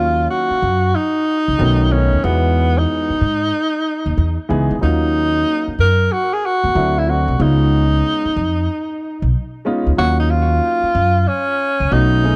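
Hip hop-leaning jazz-hop with a cool, nocturnal mood at 93 BPM in Eb minor, swung on the sixteenths, where a mellow tenor saxophone with subtone, vibrato, analog delay and a roomy sheen carries the melody over a smooth, intimate upright piano with audible action noise and a woody pizzicato upright bass up front, all playing throughout this 12.4-second cut from a longer piece in a small room with a dark, warm production.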